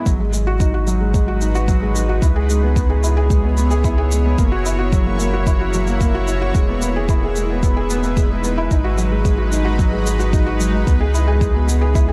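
Lightly reverberant and touched by lossy compression artefacts, this hypnotic, cinematic fragment of piano and strings electronica sits in a drop from 0.1 s, where a soft, felt-muted upright piano riff with tape echo sits up front over a cloudy, blurred granular pad bathed in its own reverb and a round sine sub bass, both pumping to the sidechain, while a layered electronic kick and a faint shaker, re-recorded in a small room, play as the harmony moves through the G#m7, C#m7, F#7, Emaj7 cycle.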